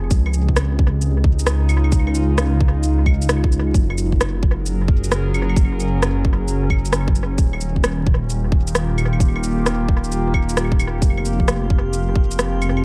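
Wistful and nocturnal, this future garage excerpt swings its sixteenths over a tight, up-front electronic kick and a patter of electronic shaker, claves and rim click touched with analog delay, while a deep, rumbling detuned saw bass pumps against the sidechain beneath. A mellow, warbling tape-like pad holds sustained chords through Dbmaj7, Gb6, Eb7 and Fm, its nostalgic lo-fi tone coloured by chorus, phaser, reverb and 12-bit sampler grit. At 11.2 seconds a faint, glassy texture of drifting overtones appears, all within an echo-heavy mix dusted with vinyl crackle.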